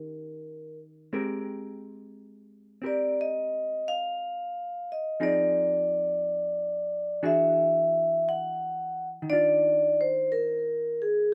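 Tender and late-night in mood, this brief cut from a longer swung jazz piece moves at a slow 59 BPM in 4/4, drifting through Abmaj9, Fm7 and E9 before settling on Ebsus2. A vibraphone struck with medium hard mallets, its motor switched off, carries the melody up front with a metallic, ringing tone set in a boxy small room. Beneath it, a clean, dark hollow-body electric guitar played with the fingers supplies softer accompaniment touched by slapback echo, all under light reverb.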